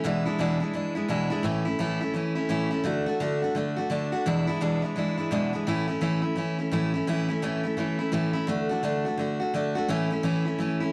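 A swung eighth-note rock groove at 171 BPM in 4/4 drives this upbeat, rowdy fragment in A major, cut from a longer piece. A picked steel-string dreadnought acoustic guitar plays alone throughout its roughly 11 seconds, bright and full-bodied and sitting up front, ranging from E2 to F#4 as it moves through E7, A and D, with a new passage arriving at 7.1 seconds. A moderate echo-chamber reverb and studio ambience give the guitar a sense of space around it.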